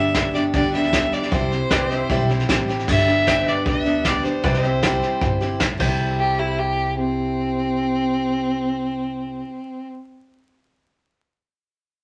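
Vinyl crackle and a moderate club reverb frame this heartfelt, easygoing stretch of honky-tonk and classic country, cut from a longer piece. A clear, focused fiddle opens with a solo before a rich, smooth fiddle takes the melody at 2.9 seconds, and the clear fiddle returns as a second line near the close. Underneath, a bright dreadnought acoustic guitar is picked, a twangy pedal steel adds compressed sustained chords with volume swells in the background, a woody, thumpy upright bass is plucked, and a vintage brush kit with dark cymbals and a punchy kick sits up front until 5.9 seconds.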